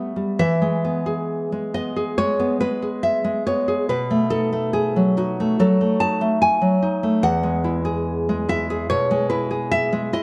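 A full-bodied nylon-string guitar sits up front in a recital hall, its tone wrapped in moderate reverb with a 1.4-second decay. This romantic solo piece for classical guitar is cut from a longer work and runs about 10 seconds, moving with a free rubato feel in 4/4 at roughly 59 to 74 BPM. The fingerpicked guitar carries everything alone, reaching from its deep low E2 up to A5 and lending the music a passionate, wistful character. In E major, the harmony travels from E to B7 at 3.9 seconds and settles back on E at 7.2 seconds. The tuning sits slightly high, with A4 at 442 Hz.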